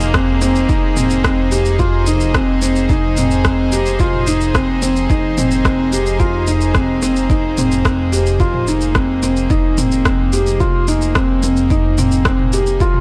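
Piano and strings electronica in F minor at 109 BPM, this intimate, hypnotic passage cut from a longer piece rests on a single Fm7 chord, with a soft, felt-muted upright piano sitting up front and playing a mellow riff through tape echo, its action noise audible. A chamber string section with a reedy gut-string tone holds sustained chords beneath, while a deep, rumbling detuned saw bass on F1 pumps against the sidechain. An organic electronic drum kit of rim click, shaker and toms plays alongside a punchy, layered electronic kick, all set in light reverb.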